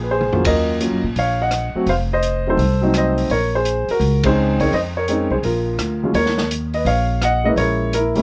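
Jazz piano trio in Bb minor at a swung 169 BPM, moody and late-night in feel, cut from a longer piece. An up-front upright piano with a woody tone and long sustain carries the melody over pizzicato upright bass with steel strings. A vintage drum kit enters at 0.2 s with an opening fill, its muffled, lo-fi sound bringing dark cymbals, a punchy kick, rim clicks and toms. The band hits an accent at 4.2 s, and the harmony moves through Ebm7, F7b9 and Bbm11 before a new section starts at 6.1 s on Eb7sus2, all in light reverb.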